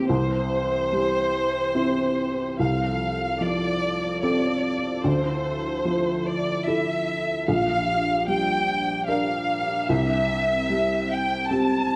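Tender and intimate, this twelve-second excerpt of neoclassical piano and strings moves at 74 BPM in 3/4 with a rubato feel. A muted chamber violin section carries the melody from C5 to A5, its con sordino tone dark and veiled, with vibrato and a bowed ensemble character that sits up front while still sounding distant. Beneath it, a felt-muted upright piano plays the accompaniment from Bb1 to Bb4, soft and mellow, with audible action noise giving it a close, natural presence. Further back, a sweeping resonant pad holds sustained chords in a detuned, vintage sawtooth voice, warbling with chorus, slow attack, filter swell and long release. The harmony moves from C through F/C, Dmadd9 and Bb6 before returning to C at 9.9 seconds, all captured by close, detailed microphones in a moderate recital hall reverb.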